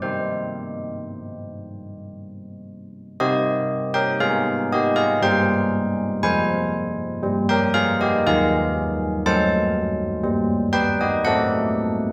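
Solemn and wintry, this classical tune for church bells moves in a slow three-beat metre, with carillon bells playing alone, up front, from start to finish across 12.1 seconds. Their bronze, ringing tone carries a minor-third overtone and the strike of an iron clapper, spanning Eb3 to A5 in a recital hall whose reverb leaves a wet halo around every note. The harmony passes from C minor through an open C fifth and F minor before arriving at an F-sharp diminished chord as this short cut from a longer piece breaks off.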